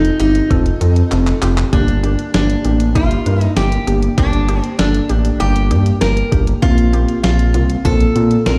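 A clean 12-bit drum machine sets a straight 4/4 pulse at 98 BPM, its thumpy kick, fat snare, hi-hat and handclaps broken by a brief fill at 1.1 seconds, while a smooth, up-front sawtooth synth bass anchors this melancholic, cool synth-pop excerpt in G minor. A warbling, detuned pluck with chorus lays down lo-fi accompaniment, and over it a metallic, fingerpicked resonator slide guitar carries the melody through analog delay. The harmony moves from F7 to Gmadd9 at 1.7 seconds and settles on Bbsus2 at 6.6 seconds, all heard as if played on a big sound system in a bare room, with large studio reverb and digital ambience.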